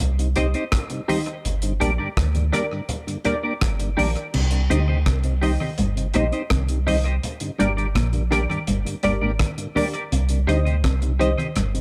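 Laid-back and serious, this roots reggae excerpt rests on a round, up-front sub bass and a cloth-damped, thuddy drum kit with dark cymbals and tape echo, while background congas, a key-clicking tonewheel organ on slow rotary speaker, a twangy clean guitar with chorus, and a detuned, phaser-treated dub chord stab fill out the Cm-Gm changes, before a dark, fingered electric guitar riff joins at 4.3 seconds, all in a light reverb.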